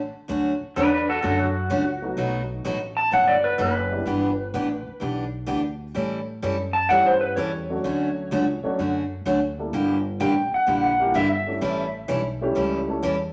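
A wet studio reverb surrounds this playful, down-home western swing excerpt in D major at 127 BPM, where a twangy, up-front lap steel sings over bright, finger-squeaking acoustic guitar, a growly, thumpy upright bass and a dark, mellow upright piano that comes in at 2.0 seconds, drops out and returns at 6.9 seconds, all beneath an electric slide guitar solo running through changes from Dmaj7 to B7, Em7, A7 and Gm6.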